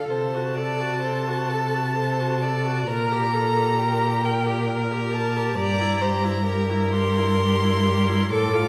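A string quartet begins together in a tender, serene slow romantic movement in 6/8 with free rubato: the first violin sings the high melody with a soft attack, vibrato and expressive portamento, the second violin traces a clear, smooth, even line beneath it, the distant viola adds a rich, sliding accompaniment, and the focused cello carries a prominent bass, the quartet heard from further back in a reverberant concert hall across this short fragment cut from a longer piece.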